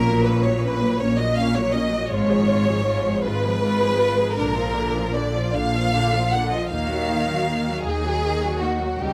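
A solemn, melancholic excerpt of a slow romantic movement for string orchestra in Eb minor, with all five sections sounding together from the start in a rubato 12/8 at 52 BPM over a progression of Gb/Bb, Fdim/Ab, Bb and Ebm. Two rich, expressive bowed violin sections carry the upper register: the melody sits back in the background while a second line stands up front. Beneath them, focused violas fill the accompaniment and warm cellos add soft-attacked portamento, while clear, intense double basses anchor the bass, all set in a moderate large-studio reverb.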